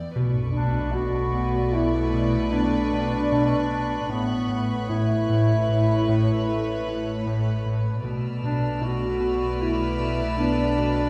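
Cinematic suspense film score in B minor at 76 BPM in 5/4, an eerie, mysterious passage cut from a longer piece, with a huge sub drop at 0.2 s over chords moving from Bm7 to Aadd9 and back to Bm7. Bowed string sections played sul tasto with soft attacks fill the texture: floating, pure violins carry the melody, a second line and a high background layer, while a dark viola section, a very quiet cello section and a dark double bass section hold the lower register alongside a smooth, detuned sawtooth synth bass riff. A mellow, loose French horn section sustains chords from 0.5 s and a distant, roomy solo clarinet adds a second line, all set in a wet scoring-stage reverb with a church or concert-hall sense of space.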